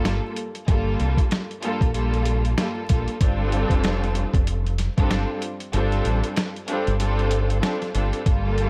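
A swung 95 BPM boom-bap groove in 4/4 drives this dark, tough hip-hop excerpt, with a gritty, pitched-down sampler kit of thumpy kick, medium-tuned snare and hi-hat sitting up front, its kick dropping out from 5.7 to 8.3 seconds. A deep, round fingered electric bass punches beneath a bowed studio string section whose expressive vibrato and portamento glide over Gm7 then F69, the strings filtered and softened by cassette tape coloring. The mix stays dry and close, with vinyl crackle hovering over the whole cut.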